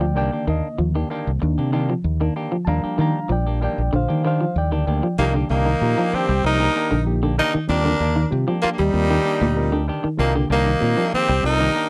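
This afrobeat excerpt is driving and funky, cut from a longer piece and captured in a dry, close 1970s-style studio sound with little reverb. A reedy electric piano with a fast tremolo takes a solo over the opening bars. Beneath it, an electric guitar at the edge of break-up plays twangy, fingered arpeggios, and a clean semi-hollow guitar adds hollow-toned stabs. Up front, a round, punchy fingered bass anchors the groove. At 5.2 seconds a raspy, gritty tenor saxophone enters with the melody, close-miked, with scooped notes, vibrato and a slapback echo. A growling trumpet with a smooth top joins it on a second line, as the harmony moves from a minor ninth chord to a major seventh at 7.7 seconds and back again.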